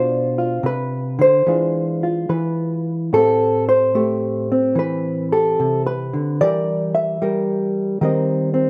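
Solo jazz at a relaxed, playful 73 BPM in 4/4, with a swung, rubato feel and tuning slightly under standard at A4 = 439 Hz. A clean, dark hollow-body electric jazz guitar, fingered and compressed, sits up front and carries the whole 8.7-second fragment of a longer piece, ranging from A2 to E5 through Bdim, E7b9, Am7, Edim and a closing Eb6. Light reverb and a rough home-demo mix give it an intimate, unpolished character, with a shift into a new section at 3.1 seconds.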